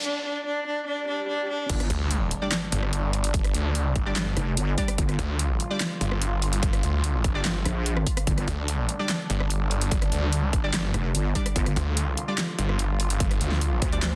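A snarling, distorted saw bass growls up front in this chaotic, heavy wobble dubstep cut, with a detuned sawtooth edge and a moving notch. It opens with a cello, soft-attacked and expressive with vibrato and portamento, carrying a brief melody through tape echo. Behind it, a rich, smooth string section holds sustained chords in the background, pumped by sidechain and dulled by a low-pass filter, while risers and a reverse cymbal build toward the drop at 1.7 seconds. There an impact hits and the half-time groove lands: a punchy, overdriven electronic kick and a big-room kit with a huge snare, handclaps, hi-hat, rim click and crash. A resonant, saturated wobble bass surges in short bursts and then holds from 10.9 seconds, while bright, bold orchestra-hit-like synth stabs ring with reverb and echo. The dense, heavily limited master keeps the whole drop crushing and loud.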